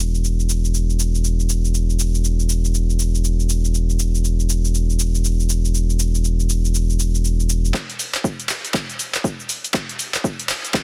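Swung sixteenths at 120 BPM drive this smooth, deep house excerpt, where a round, dark analog bass with sidechain pumping sits up front until 7.7 seconds beside a punchy, tape-warm drum machine of high-passed handclaps, hi-hat and shaker, before an analog electronic kick drum, also high-passed, enters for a build-up and drum fill that runs to 10.8 seconds, within a dry, heavily compressed radio-style mix.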